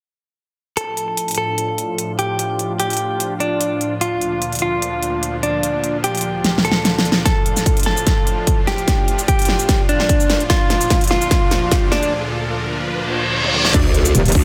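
Swung half-time sixteenths at 148 BPM drive this heavy, aggressive wobble dubstep fragment in D minor, where a big-room dance kit with a huge snare, crisp hats, shaker, toms and crash sits up front as a clean, direct-recorded electric guitar carries the melody through spring reverb and delay. Beneath it, a lush, detuned supersaw pad pumps from sidechaining under a filter sweep while the chords move between Dm and Bb/D, and a punchy, tape-warm electronic kick joins at 7.3 s to launch a build-up of drum fills, a background riser and a reverse cymbal. An impact lands at 13.7 s with a bold, bright orchestra-hit-like synth stab and an overdriven, growling bass, followed moments later by an overdriven, metallic FM wobble bass.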